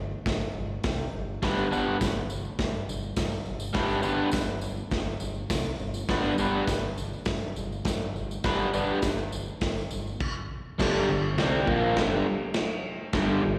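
Heard as a live gig through the venue's PA with recital-hall reverb, this swaggering, raw garage rock excerpt sets an up-front, double-tracked crunchy guitar riff with slapback echo over a growling overdriven fingered bass, a gritty breakbeat kit with a punchy kick and dark cymbals, and a jingly tambourine, before the band stops at 10.2 seconds and returns on a G5 chord at 10.8 seconds.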